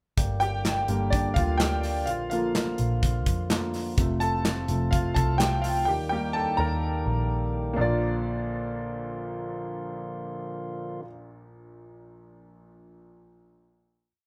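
A clear, deep-bottomed concert grand piano leads this hopeful, uplifting piano-driven pop piece with syncopated drop-2 chords and a solo through the pre-chorus, backed by a tight, airy drum kit whose snare is layered with handclaps until 5.8 seconds, a dark, round, foam-muted picked bass with slides, and a fat, lightly overdriven tonewheel organ pad, set in a moderate large studio reverb before the piano rings on alone after the final chord until 14.1 seconds.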